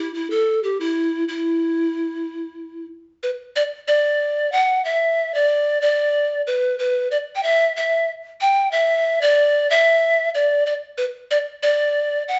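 Andean folk in E minor at a steady 93 BPM in 3/4, this melancholic, earthy fragment of a longer piece features a solo pan flute, close-miked and up front with a bamboo breathiness, soft chiffy attacks and vibrato, ranging from E4 to G5 in a moderate large-studio reverb with a dark, rolled-off top, its opening phrase giving way to a new passage at 3.5 seconds.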